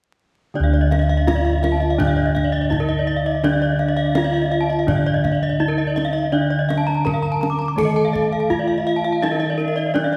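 This brilliant, hypnotic Balinese gamelan passage in D pelog moves at 83 BPM in a straight 4/4. Four bronze metallophones build the texture from about 0.5 seconds. A low one carries the accompaniment, another the melody, and two high ones play arpeggios; most are horn-struck and paired-tuned so their ringing tones shimmer, while one is struck with a wooden mallet. Round, beating bossed gongs hold the bass and a deep kendang is played with hard hands. From 1.9 seconds a pure, hollow bamboo bansuri adds a tongued second line with vibrato, set in the background. The recording sits in a church or concert hall, bathed in lush reverb with a touch of vinyl crackle, and is cut from a longer piece.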